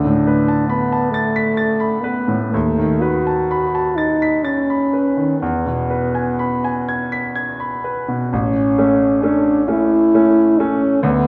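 A mellow French horn carries the lyrical melody in this serene romantic classical fragment, sung in a classical style with light vibrato and set up front as the solo voice. Beneath it, a grand piano with a bright, brilliant and natural tone supplies the accompaniment, also close at hand and spanning a broad range from deep bass to high treble. The music moves in a lilting 6/8 with a flexible, rubato feel, and the harmony travels from Bm7/D through B7/D# to E before settling on A as a new section begins at 8.3 seconds. The pair plays together throughout the 11.3 seconds, surrounded by the generous reverb of a recital hall that lends the sound an airy, spacious glow.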